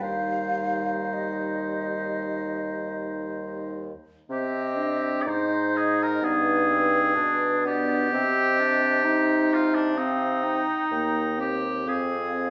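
Yearning and melancholic, this rubato romantic movement for wind quintet, taken from a longer piece, sets an airy, hollow flute melody with vibrato over a warm, up-front oboe second line, while a bright, vintage-toned clarinet and a dark, smooth-topped French horn fill in the accompaniment above a mellow bassoon bass, the ensemble sitting in a moderate recital hall reverb.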